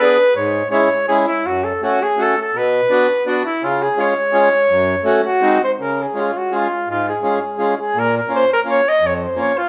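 Captured live in a large studio with a moderate reverb, this short alpine folk cut in 3/4 at 167 BPM has a jolly, bouncy mood and a rubato feel, moving from F# minor into Db major at 5.8 s. A clear, vintage flugelhorn sits up front and carries the melody as a classical-style solo, while a reedy accordion, also close, plays the accompaniment. Both parts start together, and the accordion stops at 9.5 s, just before the flugelhorn closes at 9.7 s.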